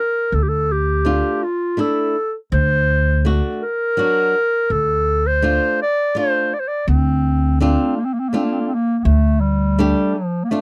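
Soulful and bittersweet, this short klezmer passage, cut from a longer piece, moves at 82 BPM in a straight 3/4 in D minor, with a classical-style clarinet carrying the melody up front from the start, its soft attack and smooth top giving it a tender voice. A woody pizzicato upright bass enters at 0.3 seconds, and a fingerpicked acoustic flamenco guitar with fresh strings joins at 1.0 seconds to accompany, as the harmony shifts from D minor to D7 at 2.5 seconds and back to D minor. The sound is dry and close, in the manner of a 1970s studio recording, with little reverb, and the opening phrase repeats before the piece is cut off.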